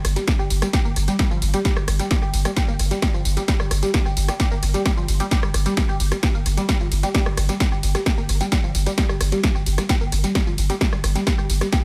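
A saturated sub bass and a punchy analog drum machine open this dark, intense stretch of driving peak-time techno at 131 BPM, cut from a longer piece. The deep, thick sub bass sits at G1, overdriven, low-pass filtered and pumping against the sidechain, while the drum machine brings hi-hat, ride cymbal, rim click, tambourine and an up-front snare with a tape-warm character and tape echo. At 0.2 seconds a tight sequenced synth riff enters between F3 and G4, its detuned sawtooth and pulse-wave tones wave-folded into a filter pluck, colored by chorus, phaser, overdrive, tape echo and sidechain pumping. A layered, heavy electronic kick drum joins at 0.3 seconds, anchoring the straight 4/4 pulse. The whole cut stays in one section, set in a digital ambience with an echo-heavy mix.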